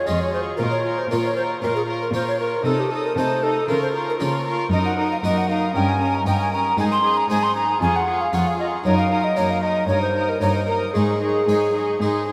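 A mellow, hollow tenor recorder leads up front with airy, tongued chiff over gut-string chamber violins, violas and a rich cello bass, joined at 0.1 seconds by a brilliant, plucked harpsichord, in this lively, festive baroque-style concerto excerpt at 116 BPM in 4/4, moving through Db/F, Bbm and Ab harmonies and bathed in the wet reverb of a vast, echoing cathedral.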